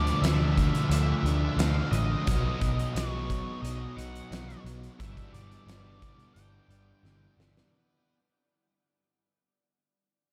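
Hazy and blissful, this short shoegaze and dream pop cut from a longer piece moves at a straight 88 BPM in 4/4 over Dmadd9, B6 and G6 chords, fading out throughout its length. An octave-fuzz lead guitar sings a dark melody through distortion and analog delay. Beneath it, a quiet, compressed clean guitar picks arpeggios while overdriven, sludgy double-tracked and thick chorused fuzz guitars layer riffs in the background, all anchored up front by a round, punchy foam-muted bass and a big-room drum kit with a fat snare that closes on a fill from 7.0 seconds.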